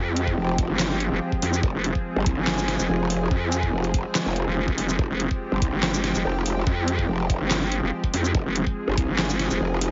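A growling, saturated bass sits up front from 0.4 seconds, its detuned unison voices pushed through a formant filter and overdrive to give this heavy wobble dubstep cut its aggressive, chaotic edge. Alongside it, a nasal vowel-sweep wobble bass, also up front, holds the low end from the start, also chorused and overdriven, while a lush, thick pad of detuned sawtooth and square waves sustains slow-attack chords, coloured by phaser and chorus and pumping against the sidechain. The track moves at 143 BPM in 4/4 with a half-time feel, resting on an Fmadd9 chord in F minor. A layered electronic kit of deep snare, metallic hats, handclaps and shaker sits up front alongside a knocking electronic kick, both re-recorded in a small room. Light reverb surrounds a heavily compressed, radio-like sound with the top end rolled off, and the passage is cut from a longer piece.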